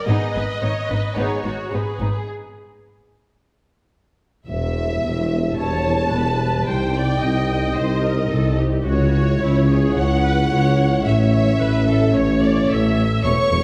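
A dramatic, epic cinematic passage at 109 BPM in 4/4 opens with a focused, vibrato-laden violin section carrying the melody over intense violas, a distant second violin line, woody, close cellos and a lush double bass section; the violas drop out at 2.3 s and return at 5.6 s, while a dark, roomy French horn section adds sustained chords and a solo tuba joins on bass from 4.5 s as the music turns to E dorian, set in a wet scoring-stage reverb.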